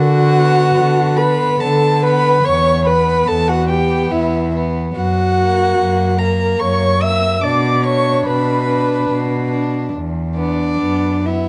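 In a warm production with light reverb and a softened top end, this slow, rubato romantic movement for string quartet unfolds in B minor at 72 BPM in 3/4, melancholic and yearning, as a section cut from a longer piece. A dark first violin carries the melody up front and close, with light vibrato and an intimate sul tasto touch, over a nasal, woody viola accompaniment and a pure, floating cello bass that also sits forward. From 0.3 seconds a second violin adds a soft-edged, airy second line.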